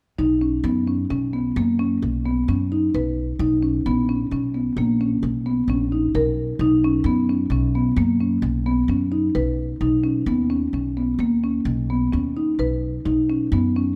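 Bathed in moderate recital hall reverb, this shimmering, playful excerpt of contemporary chamber music in 7/4 at 131 BPM in B major sets up-front marimba arpeggios, struck with medium mallets on woody padauk bars, over a thumpy pizzicato upright bass with steel strings, both playing from 0.2 to 13.9 seconds through Bsus2 and Badd9 harmonies with a chordless stretch at 3.4 seconds.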